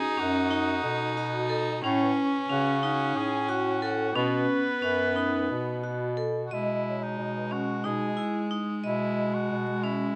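A soft-attacked cor anglais with light vibrato carries the hopeful, restless melody of this contemporary chamber piece in 7/8, joined by an earthy, up-front bowed viola on a second line, metallic hard-mallet vibraphone arpeggios with slow motor vibrato, and a clear, vintage-toned bass clarinet in a jazz style, while a delicate, bell-like celesta sits in the background until 3.2 seconds and returns at 6.9 seconds, captured with close, detailed microphones and light reverb.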